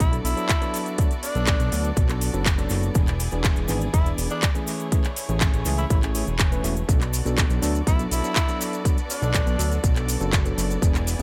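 A straight 4/4 nu-disco groove at 122 BPM in B dorian, built on a punchy, up-front electronic kick, a house kit with metallic hats, handclaps, shaker and dub echo, and a very quiet, dry cabasa, carries a fat, detuned sawtooth bass, tine electric piano and bowed chamber violins pumping under the sidechain, while a growling, raspy tenor saxophone with analog delay sings a cosmic, sensual melody until 9.8 seconds over Bm7, E7 and Amaj7 in an echo-heavy digital ambience, all cut from a longer piece.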